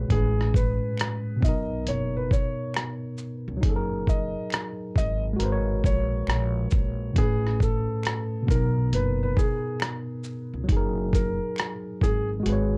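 Lo-fi hip hop at 68 BPM with a swung 16th-note feel, nostalgic and melancholic, cut from a longer piece. A worn, slightly out-of-tune tine electric piano with cassette-tape coloring carries the chords up front, moving through Amaj9, Bmaj7, F#69 and G#m11, while a soft, felt-muted upright piano sings the melody through plate reverb and a woody, growly pizzicato upright bass holds the low end. A compressed, pitched-down sampler-style drum kit with a thumpy kick, hi-hat, rim click and shaker sits up front, a very quiet, human finger snap joins from 1.0 to 11.8 s, and the kick falls silent at 12.5 s.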